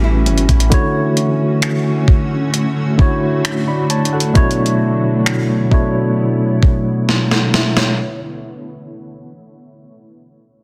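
Moody and longing, this contemporary R&B excerpt sets a clean tine electric piano heard through its built-in speakers up front, beside a blurred, evolving granular cloud pad and a fingerpicked flamenco guitar whose delayed arpeggios, complete with finger squeak, end by 1.3 seconds. A deep, boomy sine 808-style bass sounds only briefly at the start, while a gated 80s digital drum machine enters at 0.3 seconds with finger snaps, hi-hat, a thumpy kick and an overdriven gated-reverb snare, re-recorded in a small room. A filter sweep runs through the rest of the clip over chords moving from A7 to Dmaj7 to Bm11, and a drum fill arrives at 7.1 seconds, all within a dense, heavily limited modern master.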